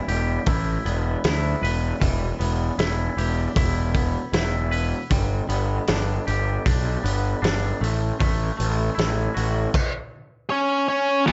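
Angsty and dark, this short cut of quiet-loud alternative rock opens with a clean, twangy electric guitar playing arpeggios through lush chorus, slapback echo and plate reverb, over a fuzzed, punchy picked bass and a loose, gritty indie drum kit with a fat snare and punchy kick, moving from Em to G to A. At 10.5 seconds a dark octave-fuzz lead guitar takes up the melody, and at 11.3 seconds a raw, bright garage guitar with overdrive and phaser and a scooped high-gain guitar come in together on riffs. The mix is dry and up front, with a rolled-off top end.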